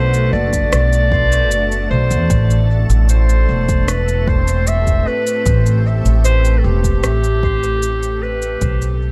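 A clear, vintage-toned clarinet carries the melody up front in a classical solo style, its phrases trailing off into dub echo over this hazy, spacious piece of ambient dub at 76 BPM in a straight 4/4, set in A dorian. Beneath it, a pizzicato upright bass sits prominently in the mix, woody and thumpy with steel strings, anchoring the low end. A soft, organ-like pad of pure sine and triangle tones, touched with ring modulation and detuned unison, holds sustained chords with a slow attack and long release, dressed in ensemble chorus and its own reverb. Electronic cabasa and rim click, also sent through dub echo, join at 0.1 seconds, and a deep, produced electronic kick drum enters at 0.5 seconds. The harmony moves from Bm7 to Am9, all wrapped in a small, echo-heavy room ambience, and this fragment of a longer piece fades out from 6.5 seconds to its close.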